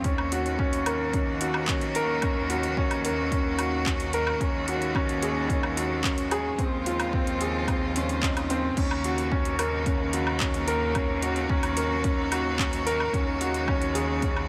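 Built around a dark, woody upright piano riff with tape echo, this hypnotic, moving piano-and-strings electronica cut at 110 BPM in Eb dorian sets a distant, vibrato-rich string quartet holding sustained chords and a pure, floating bowed cello section on the bass, both pumping to the sidechain, over an overdriven deep house kit of crash cymbal, handclaps, metallic hi-hats and woodblock plus a deep electronic kick, with a faint electronic swell at 7.9 seconds as the chords move from Ebm7 through Ab7sus4/Eb and Dbmaj7/Eb under light reverb.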